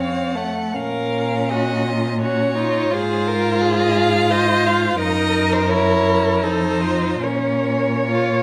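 This classical excerpt is a slow romantic movement for string quartet in Bb minor, moving in 3/4 at 72-87 BPM with a free, rubato feel and a solemn, yearning mood. All four bowed parts play from 0.0 to 8.4 s, each with vibrato, portamento and expressive phrasing. A rich-toned first violin carries the melody with a soft attack, while a warm second violin shapes a lower supporting line. The viola sounds distant as it fills in the accompaniment, and the cello sits up front on the bass. The harmony moves from F to Bb minor, passes through Fm/Ab and Ebm/Gb, and settles through F7 back to Bb minor at 7.2 s, all bathed in the wet reverb of a recital hall.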